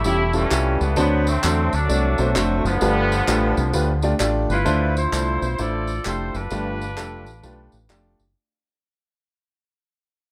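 This uptempo gospel excerpt opens with the full band at once: a horn section carrying the melody over concert grand piano, fingered electric bass, and a percussion bed of tambourine, egg shaker and group handclaps. The mood is jubilant yet reverent, moving at 130 BPM in 4/4 with a swung eighth-note feel. The horns sound clear and vintage, playing loose in a pop style with light vibrato, while the piano accompaniment is polished and present, with short sustain and a deep low end. The bass sits up front with a round, punchy, amped tone, and the percussion has a band-limited, acoustic character. The harmony moves from A7b13 through D7 to G9, then shifts to Dm9 as the second passage begins at 4.7 seconds before returning to G9, while a fade-out from 4.7 seconds carries the music out by 8.4 seconds inside a light studio reverb.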